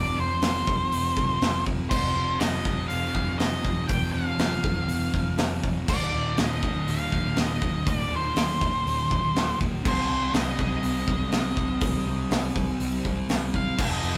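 A steady, straight 4/4 pulse at 121 BPM drives this blissful, dreamy shoegaze and dream pop rock excerpt, where a punchy, up-front acoustic drum kit with bright cymbals enters at 0.4 s alongside a dark octave-fuzz lead guitar melody, a thick fuzz guitar riff, a warm overdriven guitar riff sitting in the background, and a round, foam-muted vintage picked bass, all moving through F7, Eb and Cm in a rough rehearsal-room sound with moderate reverb.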